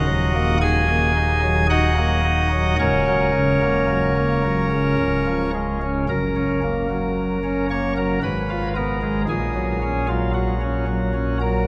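A D-sharp minor chord opens this reverent, serene chorale-style classical passage for solo pipe organ, voiced on a nasal cornet stop with baroque character and a distinct chiff, placed up front against a long cathedral reverb. Moving slowly at 56 BPM in 3/4 and in F-sharp major, the music spans from the deep bass up to the treble, with a second phrase beginning around 6.1 seconds on an F-sharp chord. This brief fragment of a longer piece closes on an F-sharp chord over A-sharp at 9.3 seconds.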